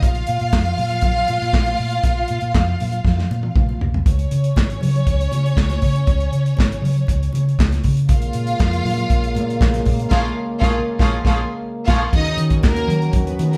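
A sultry, danceable disco groove opens with an up-front soul drum kit, its punchy kick, dark cymbals and handclaps leading into a drum fill at 3.0 seconds, over a round, hollow-body fingered bass, lush bowed strings with vibrato and very quiet, bright high-tuned congas heard at a distance. At 8.1 seconds a mellow French horn section adds sustained chords in a classical style, and from 10.1 seconds a clear, loose pop-style horn section punches in with stabs during a band accent. The band plays live together in one room, with a moderate large studio reverb giving the sound an open, roomy feel.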